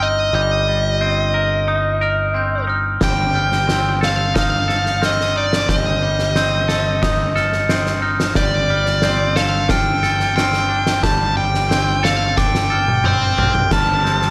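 Cathartic and cinematic, this post-rock excerpt sets a dark, overdriven lead guitar melody up front with slapback echo against a twangy, scooped clean electric guitar's arpeggios, sparkling bell-like glockenspiel arpeggios from hard plastic mallets in the background and a growling, overdriven picked bass, before an oversized low-tuned drum kit with a fat snare, punchy kick and gritty, saturated stone-room sound enters at 3.0 seconds and drives a fill from 12.4 seconds as the chords move from Cm7/G toward F/G.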